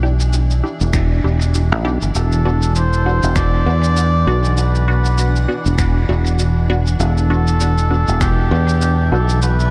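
This spacious, meditative ambient dub excerpt opens on a blurred, cloudy granular pad with a slow attack and long release, alongside resonant, detuned chord stabs run through a phaser and dub echo, and a growly, punchy fingered electric bass that sits up front. The pad moves from Em7 to Bm/E at 2.1 seconds at a relaxed 99 BPM in 4/4, with a 58% swing on the sixteenths and a tuning of A4 = 437 Hz. A muffled, tape-warm layer of electronic shaker and finger snaps is washed in reverb and dub echo at a low level, and a deep, layered electronic kick settles into the background from 0.9 seconds. At 2.2 seconds a soft trumpet with a cup mute takes the solo melody in a classical style, its veiled, smooth-topped tone repeating through dub echo. The bright pad's evolving texture and the digital ambience give the mix a floating, unhurried sense of space.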